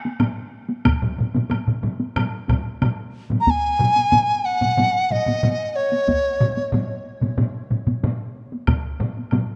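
Powerful and driving, this short cut from a longer Japanese traditional piece is built around a taiko drum ensemble in a straight 4/4 feel. Several taiko ensembles play close in the mix, two struck with heavy sticks and sounding dry, a third played with hard sticks and sitting in the background. Solo taiko drums, also struck with hard sticks, sound distant, as if heard across a large room. A woody woodblock in a live room taps through the opening and returns briefly near the close. At 3.4 seconds a large dizi comes up front, its bamboo tone airy and mellow with a buzzing membrane, vibrato, a crisp attack and rolled-off highs, ranging from Db5 to Bb5 before it stops at 6.7 seconds. A huge ambient reverb with a four-second tail gives the recording a spacious depth.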